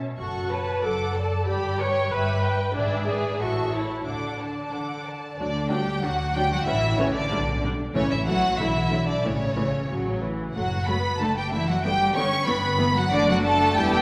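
A rich cello section opens this graceful, spirited classical-period movement for string orchestra, with the rest of the strings joining at 0.2 seconds. Up front, a warm, focused violin section carries the melody with vibrato, while a second violin section, darker and more distant, traces an expressive second line beneath it. A smooth, even viola section fills in the accompaniment, and the cellos and a woody, dark double bass section share the bass together. In this short cut from a longer piece, the harmony moves through a brisk progression in 2/4, settling on D before the second section begins at 5.4 seconds and returning toward D by the close at 14.0 seconds. The bowed ensemble sound is lush and sits in a concert hall with a long, wet reverb.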